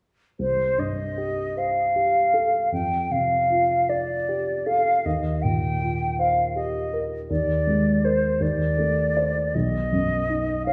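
An airy concert flute carries the melody from 0.4 seconds, its tongued notes shaded with vibrato and sung in an expressive line between C5 and G5. This is a wistful, mysterious fragment of a classical, impressionist duo, moving in a slow, rubato 6/8 at 53 BPM counted in dotted quarters, in C dorian with tuning at A4 = 439 Hz. A dark grand piano accompanies for the same span, reaching from a deep bass at B1 up to D5 with a mellow, smooth, vintage tone and short sustain. Its harmony drifts from Cm6 through F69 and Eb69 to Bb9/Eb, then D5/Eb, before settling on B near 9.5 seconds. Both instruments sit up front, yet the recital hall's reverb of 1.4 seconds places the listener further back in the room, wrapping the duo in a wet space.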